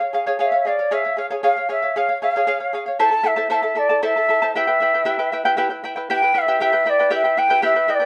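An airy cane quena with gentle vibrato and a soft attack carries the melody from the first moment, over a fingerpicked charango whose shimmering double strings, some doubled at the octave, play the accompaniment. This short section cut from a longer Andean folk piece has an earthy, festive mood in a straight 6/8, with the harmony moving from C# to A minor and E minor. Close, detailed microphones and light reverb keep both instruments up front, with the quena sounding expressive.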